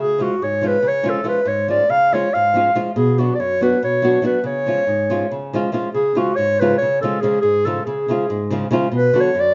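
A dark, soft-attacked clarinet and a small, fingerpicked nylon-string guitar begin together in this fiery, virtuosic Balkan folk fragment in 7/8. The clarinet plays an up-front classical-style solo line while the acoustic guitar, also up front, accompanies it, shifting between C# and Bm. The band plays live in a wet stone room with a muffled top end, and the passage is cut off at 9.5 seconds.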